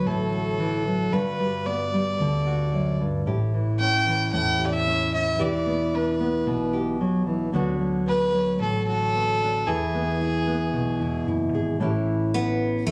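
A straight 4/4 pulse at 112 BPM carries this pastoral, nostalgic folk fragment in A mixolydian, moving through chords such as D6, Gmaj7, A7 and Em7. A dark, reedy fiddle with a gut-string tone takes a close, bowed solo until 11.8 seconds, over a fingerpicked nylon-string guitar with a deep classical body and a round, punchy hollow-body electric bass. At 12.3 seconds a bright, picked steel-string dreadnought steps up front with the melody, finger squeak audible, and the whole piece has the compressed, phone-in-the-room sound of a club space with moderate reverb.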